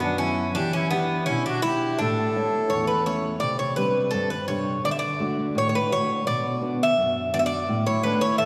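A straight 2/4 pulse at 84 BPM carries this hopeful, sunny Greek folk excerpt, where a bright, metallic bouzouki leads the melody up front with its doubled and partly octave-strung courses, a dark, fingerpicked steel-string acoustic guitar supplies up-front accompaniment with audible finger squeak, and a reedy, close-miked single-reed accordion adds a clear second line before dropping out at 3.0 seconds and returning at 7.9 seconds, all set in a church or concert hall with a long, lush reverb tail.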